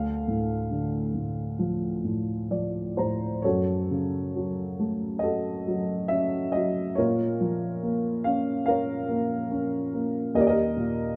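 Close, detailed microphones and light reverb frame a short excerpt cut from a longer classical piece for solo piano, lyrical and melancholic in a reflective D minor. A dark upright piano sits up front, its tone mellow, woody and boxy, slightly detuned, with a tuning of A4 = 438 Hz, and it plays alone for the full 11.2 seconds across a range from D2 to Bb5. The tempo moves freely between 62 and 72 BPM in 4/4, with a rubato feel that lets phrases breathe. A brief piano fill from 2.0 to 3.4 seconds closes the opening passage before the music turns at 3.4 seconds into a new section. The harmony shifts from D minor to F sharp minor, then to B flat minor and finally E flat, giving the passage a searching, inward quality.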